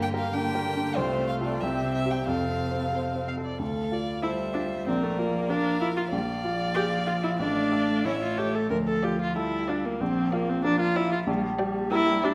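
Set in a brisk two-beat metre with a rubato feel, this short cut from a longer classical-period movement for piano quintet sounds dramatic and urgent. It opens in the major before turning to the minor at 3.6 seconds, where the harmony darkens across a longer second section. A single bowed violin carries the melody with a smooth, even vibrato and close presence, while a second violin weaves a second line with expressive portamento. A bowed cello adds its own second line beneath, soft in attack and sliding expressively between notes. The viola, clear and focused, sits up front with the baby grand piano, whose present, warm tone fills out the accompaniment across a broad span from deep bass to the upper middle. A wet scoring-stage reverb wraps the ensemble in a sense of space.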